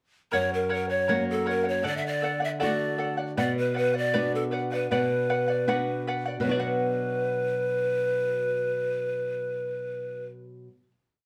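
From 0.3 s, breathy cane pan pipes with a soft, chiffy attack carry an up-front, motif-based melody in period phrases over a shimmering, fingerpicked and strummed charango with double strings and a bright, fresh-strung flamenco guitar marking the pulse with bass notes and chord figures, shaping a melancholic, earthy Andean folk piece in B minor at 78 BPM in 2/4 that moves through F#, D and Bm to a final chord at 6.4 s, all set back in a wet studio reverb.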